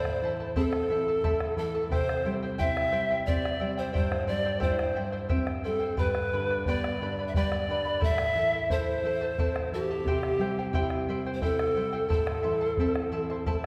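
A bright, airy pan flute carries the melody up front, its wooden tone touched with vibrato, tongued attacks and a breathy chiff, and an unsteady quality that adds to the wistful, melancholic feel. This Andean folk excerpt moves at 88 BPM in a straight 3/4 in A minor, with the harmony cycling through Am, C and G. Beneath the flute, a fingerpicked charango adds a shimmering layer from its double strings, some of them doubled at the octave. A dark, full-bodied nylon-string guitar, thumb-plucked in a deep classical manner, fills out the low end. A round, close bombo keeps the pulse, entering at 0.1 s. The ensemble sounds as if heard from further back in a concert hall, wrapped in a lush 2.4-second reverb, and the whole passage is cut from a longer piece, ending at 13.7 s.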